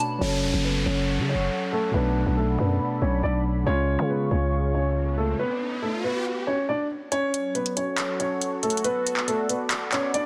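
A half-time trap groove drives this eerie, dark hip hop excerpt, with crisp hi-hats and handclaps carrying a gritty 12-bit sampler edge that drops away and returns up front at 7.1 s. A mellow, boxy concert grand with deep bass carries the melody through filtering and delay, over a growling, buzzy 808 bass and a barky tine electric piano played through a combo amp, both stopping at 5.4 s amid an electronic downlifter and riser. Beneath, an evolving, detuned sawtooth pad with chorus, a slow attack and a filter swell sustains chords throughout, in a dense, heavily limited digital ambience.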